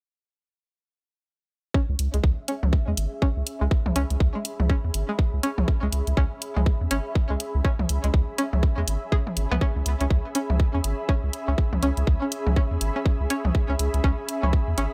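A digital ambience surrounds this sparse, clinical minimal techno fragment, which gets underway at 1.7 seconds with a tight, up-front kick and a twangy, string-like resonator pluck riff that carries chorus, digital delay and a filter sweep. A round, deep analog bass with its own filter sweep joins at 1.9 seconds, followed by layered hi-hats, an ethereal, detuned pad that breathes in slowly behind the groove, and tape-tinged toms with echo. The bass, pluck and pad all pump against the kick through sidechain compression, while the drums sit in studio reverb over a swung 16th-note feel.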